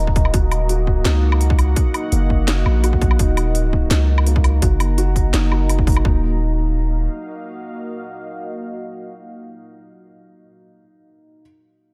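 This heavy, cinematic half-time drum and bass excerpt in Eb minor at 168 BPM opens on a drop. A deep, detuned sawtooth pad pumps beneath chorus and reverb, a soft felt-muted upright piano plays delayed arpeggios, and a long, sine-toned 808-style bass sits up front. A hard-clipped electronic kick and a layered kit of cracking snare, crisp hats and woodblock drive the groove until about 6 seconds, when the harmony moves from Ebm to Ebmadd9; the bass then stops, the moody pad follows at 9.7 seconds, and the intimate piano plays alone until 11.4 seconds in a dry mix.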